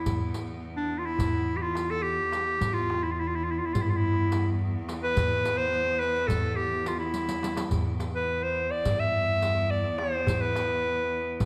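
Set in a moderate scoring-stage reverb, this hypnotic, melancholic excerpt of Turkish makam ensemble music in 9/8 at 212 BPM (eighths) in E makam kurdi features a bright, classical-style clarinet soloing up front over a rich, intense bowed cello drone on E2 with vibrato, a woody, dark pizzicato upright bass, a clay-shell darbuka played with soft hands in the background, and a riq with dark jingles, with a brief drum fill at 7.2 seconds.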